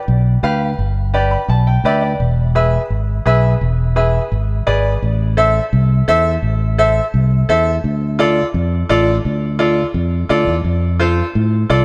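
Fiery and passionate, this cumbia cut moves at 170 BPM in a straight 4/4, centered on A minor with tuning set slightly below standard at A4 = 435 Hz. A fingered electric bass enters at 0.1 seconds, its round, amped tone sitting up front and spanning the low register from E1 to A2. A bright upright piano joins at 0.4 seconds as accompaniment, its woody, brilliant attack and short sustain ringing through the upper range, with a fill standing out between 1.1 and 2.2 seconds. The harmony shifts from G to E in the opening section, then the second section at 5.0 seconds moves through A minor, D minor and F. A moderate plate reverb places the pair further back in the room, lending a 2.7-second tail to this portion taken from a longer piece.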